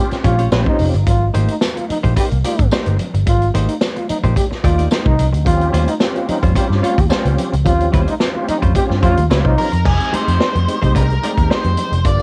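This cassette home recording has a light reverb, and it is cut from a longer funk piece with a cool, funky mood in a straight 4/4. A round, foam-muted picked bass and a vintage drum kit with a punchy kick, shadowy cymbals, a rolled-off top and a cassette-tape coloring sit up front. Very quiet, high-tuned congas ring from a distant room, and a jingly tambourine sits in the background from 0.5 to 9.4 seconds. A breathy trombone carries a mellow, whispered second line with vibrato, plate reverb and analog delay over a clean, compressed semi-hollow guitar playing fingered accompaniment. A reedy tonewheel organ with key click and a slow rotary speaker adds background stabs, returning at 5.4 seconds after a brief opening hit. At 9.6 seconds a dark, distorted octave-fuzz lead guitar takes the melody, just before the harmony settles on Fm9.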